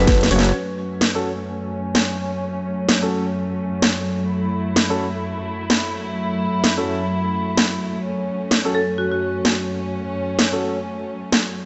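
Swung sixteenths drive this gritty, swaggering bass house fragment, which opens with a drum fill while a growling, tube-saturated FM bass sounds up front and stops by 0.5 seconds, as a garage drum kit with a cracking snare and hi-hat sits forward over sidechain-pumped sustained chords from a dark, sul tasto chamber string section under a filter sweep, mellow pumping grand piano stabs trailed by tape echo, and brief woody marimba melody phrases that return near 8.7 seconds, the mix set in a lush hall reverb with a dull top end.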